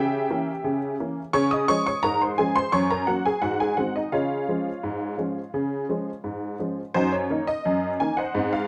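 A honky-tonk upright piano opens this short ragtime clip alone, and it carries the whole piece as a solo voice. Its tone is detuned and jangly, with a woody, vintage character that sounds natural and sits up front in the mix. The mood is lively and cheerful, set in a straight two-beat metre. The harmony starts on a diminished chord before settling on the home chord and moving through the subdominant and a dominant seventh, then turns to a new section at 6.9 seconds that runs until the piece is cut off at 8.7 seconds. Light reverb and a dark, warm production give the short fragment its old-time feel.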